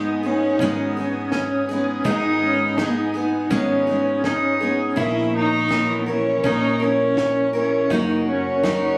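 Acoustic folk in an intimate, wistful mood, this short clip from a longer piece features a bowed cello with an earthy, nasal tone and light vibrato that carries a solo up front over bright picked steel-string guitar, slightly broken-up lo-fi electric guitar arpeggios with tremolo, and a round, woody fretless bass. A dry cocktail kit with a high-tuned snare and punchy kick enters at 0.6 s, while an airy, breathy pad with chorus and phaser sustains chords in the background as the harmony moves from G#m through A#dim to F#. The sound is that of a phone capturing a small room, with added studio reverb and compression.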